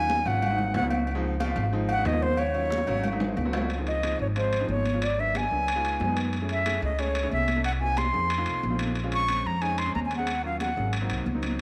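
A moderate plate reverb gives this lively, danceable Afro-Cuban jazz excerpt in Db major a roomy sheen, with the distant congas, timbales and agogo bells sitting back as if in a large room while the flute and upright bass stand up front. At a brisk 182 BPM in straight 4/4, an airy, reedy concert flute carries the melody with vibrato and a soft attack, soloing until 3.7 s, with a drum fill from 3.2 s, and then continuing until it stops at 10.9 s. Beneath it, a clear grand piano comps through jazzy chords such as Dbmaj9, Ab7b9 and Bbm9, a woody, growly pizzicato upright bass anchors the low end, high-tuned thin-skinned congas played with soft hands patter in the background, and the ringing metal of the timbales and agogo bells sounds from further back.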